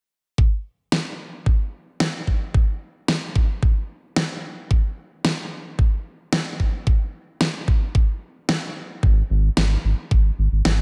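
A straight 4/4 synthwave groove opens at 0.4 seconds with a knocking, tape-warm electronic kick up front, joined by a fat, layered electronic snare carrying a slapback echo, setting a nostalgic, cinematic mood. At 9.0 seconds a round, deep analog bass enters, its mellow, sustained tone blending sawtooth, sine and triangle colours and pumping against the sidechain. A light reverb surrounds this short cut from a longer piece.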